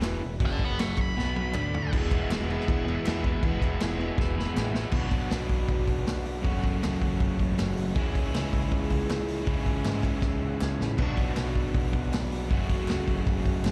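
A crunchy, double-tracked overdriven guitar riff with slapback echo drives this swaggering, raw garage rock clip in straight 4/4, alongside a growling overdriven picked bass, a punchy vintage drum kit with dark cymbals and drum fills, a reedy combo organ holding very quiet sustained chords with light vibrato, hollow group handclaps, and a dark octave-fuzz lead guitar with tape echo that flares between 0.5 and 1.9 seconds, all heard as a live gig through the venue's PA.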